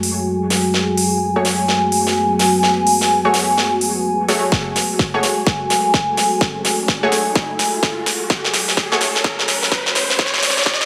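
Bass house at 127 BPM in F# minor, a gritty, bouncy build-up cut from a longer piece, where a deep, moody sawtooth pad and a warbling, lo-fi tape-like pad hold an F#madd9 chord with chorus and sidechain pumping over crisp swung hats and a huge snare from a big-room dance kit, bold detuned orchestra-hit-like synth stabs with dub echo enter at 1.4 s, a punchy, up-front electronic kick joins at 4.5 s, and an electronic riser arrives at 5.6 s, with a drum fill and filter sweep running throughout inside a wet digital room reverb.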